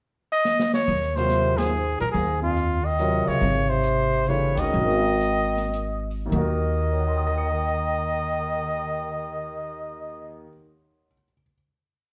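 A wet stone room reverb surrounds a small band playing live together in one space on this short, complete modal jazz piece in Eb dorian, swung in 3/4 at a tempo between 99 and 142 BPM. Entering just before a brief drum fill, the breathy, close-miked trumpet sits up front with vibrato and scooped notes, shaping motif-based period phrases over a woody, thumpy upright bass plucked in a two-feel. A mellow bass clarinet plays a second line in octave doubling with its own vibrato and scoops, while the piano adds syncopated quartal comping with deep bass through Eb13sus4 and Ab9sus4 harmonies. The smooth drum kit keeps time on the hi-hat with dark cymbals, a medium-tuned snare and a boomy kick until it stops at 6.2 seconds, as the band slows from 3.4 seconds toward a closing Ebm chord at 6.3 seconds. Intense and hypnotic, the performance is punctuated by band accents at 1.5 and 4.5 seconds.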